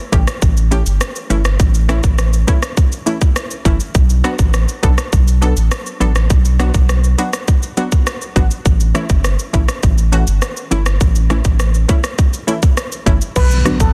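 Bouncy and tough, this dancehall clip rides on an overdriven electronic drum kit with a tight kick, smooth hats, rim clicks, shaker and crash, up front over a deep, saturated sub bass and punchy, detuned sawtooth chord stabs with a bright chorus sheen moving between A and Bm. Near the end, at 13.4 seconds, a quiet electronic impact lands as a shimmering, metallic steel pan enters with a short lead phrase, joined at 13.5 seconds by a very quiet, glassy FM pad with an ethereal, mellow glow. The dense, heavily limited mix stays dry, and the clip is cut from a longer piece.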